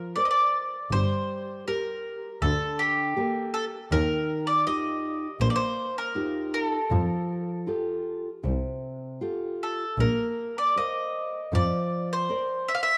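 Fado-style ballad, longing and passionate, unfolding with a free, rubato feel in 4/4. A picked mandolin carries the melody up front, its doubled strings giving it a woody voice. Beneath it, a nylon-string guitar is fingerpicked in a classical manner, supporting the tune with warm, up-front accompaniment. A single bowed double bass enters at 0.9 seconds and holds a smooth, even line with vibrato until 11.6 seconds. The harmony drifts through added-ninth chords, and a wet plate reverb wraps this short passage, cut from a longer piece, in a lingering haze.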